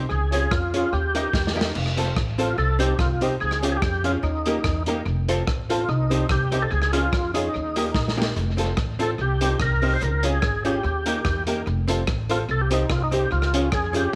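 A bouncy, cheerful ska passage opens with a dark, hollow-body archtop guitar playing clean, compressed accompaniment through tape echo, jangly, detuned honky-tonk piano stabs set in the background, and a woody pizzicato upright bass up front. A full, lightly overdriven tonewheel organ carries the melody through chorus vibrato and a slow rotary speaker, while a gritty, saturated breakbeat kit with dark cymbals and a tight kick joins at 0.3 seconds, also treated with tape echo, and adds drum fills at 1.3 and 7.9 seconds. The chords cycle through Db, Eb, F and C minor with a light swing in a small room with light reverb, and the music is cut from a longer piece.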